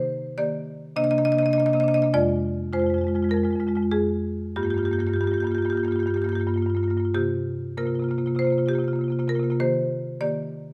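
A solo marimba played with medium hard mallets opens on an Ebmaj7 chord, its padauk bars sounding woody and bright with a percussive edge as the part sits up front across a range from F2 to Eb5. This reflective, hypnotic contemporary classical fragment moves with a rubato feel in 4/4, passing through Cm9, Fm, Gm7 and C7sus4 before settling back on Ebmaj7 at 9.6 seconds. A moderate large-studio reverb with a 1.4-second tail surrounds the instrument for the full 10.7 seconds.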